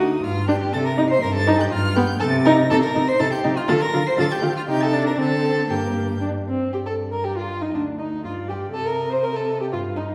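Restless and dramatic, this quick classical-period movement for string quartet in G minor moves at 121 BPM in 2/4 with a rubato feel, and it is cut from a longer piece. All four players sound together from the start to about 10 seconds, with the first violin carrying the melody high into its range, reaching up to C7, in a rich, focused tone with vibrato. The second violin sits up front with a clear, focused second line, while the viola fills in the accompaniment with a soft attack, expressive portamento and a close, rich presence. Beneath them, the cello anchors the bass, clear and up front. The harmony leans on C minor and G against a brief D minor, with a momentary break in the chords at 7.7 seconds, and the opening material returns at 6.7 seconds. The quartet is heard from further back in a reverberant recital hall, which lends the sound a sense of space.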